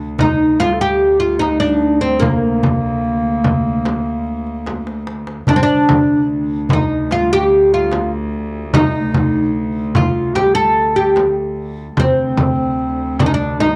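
A bowed chamber cello section opens this longing, soulful Turkish makam ensemble piece at 0.0 seconds, sustaining a low D2 drone with a nasal, gut-string, period-style tone. The oud enters almost at once with the melody in D makam kurdi, its fretless, plectrum-plucked double strings sounding woody, deep and up front. A dark clarinet in classical style carries a second line in the same Bb3 to A4 register, colored by tape echo. Darbuka, with a clay shell and soft hands, joins a vintage, band-limited frame drum struck with hard hands to hold a straight 4/4 at 74 BPM, and a drum fill stands out from 4.7 to 5.5 seconds. The sound is a dry, close 1970s-style studio recording with light reverb, and the passage is cut from a longer piece.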